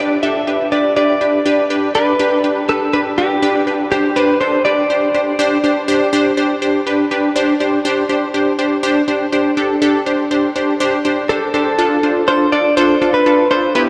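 Cool and driving, this pop excerpt moves at 122 BPM in a straight 4/4 feel, cut from a longer piece. A funky polysynth comp carries the accompaniment throughout, its punchy, detuned sawtooth and pulse-wave tones shaped by a filter pluck with a fast attack, sitting up front with a chorus on it. Over it, a direct-recorded clean electric guitar plays the melody between G4 and E5, its picked, scooped, compressed tone bathed in lush chorus and diffuse ambient delay. The guitar drops out at 7.3 seconds and returns at 11.3 seconds, while the harmony shifts from G/D to Csus2 at 3.9 seconds and settles on Dm at 11.8 seconds. A cathedral reverb with a 5.2-second decay soaks the whole mix, giving it a dreamy feel.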